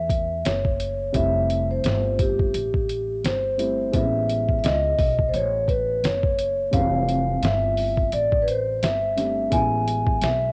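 A swung sixteenth-note groove from a muffled, compressed, sampler-style drum kit with a thumpy kick carries this relaxed, smooth jazz-hop excerpt, where a ringing soft-mallet vibraphone with tape echo sings the melody up front over a dark, boxy baby grand piano, a woody pizzicato upright bass and lightly reverberant cassette-tape grit, drifting between Fmaj9 and Amaj9 chords.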